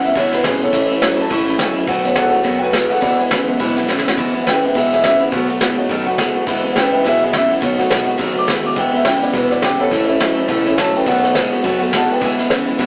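A dark, mellow upright piano takes a solo across this rollicking, retro rockabilly excerpt in E major, swinging at 209 BPM over a steady turn through E, A and B7 with a drum fill at 3.9 seconds. Brushes on a vintage kit sit up front with a punchy kick and dark cymbals, while a bright, full-bodied steel-string acoustic guitar picks along, finger squeak audible, and an electric guitar through a small old amp plays a slightly broken-up, compressed riff. A woody, thumpy pizzicato upright bass enters at 0.2 seconds and stays in the background, all captured with the rough feel of a rehearsal room and the sound of AM radio.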